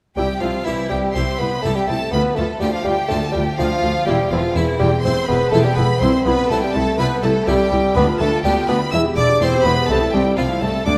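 Classical in a baroque-style concerto idiom, this brilliant, lively excerpt moves at 124 BPM in a straight 4/4 in C major and is cut from a longer piece. A mellow solo bassoon with light vibrato carries the melody in its middle register, joined high above by a close, expressive chamber violin section with rich vibrato. Beneath them, a smooth, lush studio violin section sings a second line. The background is filled by a full, brilliant Italian-style harpsichord plucking accompaniment over its three sets of strings, alongside an even, symphonic viola section with a smooth top. A close chamber double bass section and a distant, expressive cello section anchor the bass, and all seven parts play from 0.2 to about 11.0 seconds over a progression that passes from C through Dmadd11 and Bdim/D to close on Am/C, all set in a wet concert hall reverb with a 2.0-second decay.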